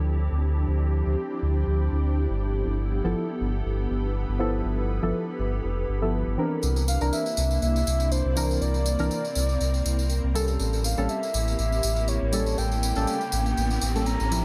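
A lightly reverberant, smooth and deep excerpt of swung deep house at 121 BPM, built on an up-front, full sine sub bass with octave beneath a hollow, warbling pad and an ethereal, airy pad with tremolo, both with ensemble chorus, over Dm11, G13, C9 and A7b9 chords, with dark, detuned chord stabs with chorus and delay entering at 3.0 seconds, a jingly, bright tambourine arriving just before a breathy, flute-like synth lead with vibrato and delay at 6.9 seconds, and an electronic riser sitting in the background from 12.6 seconds.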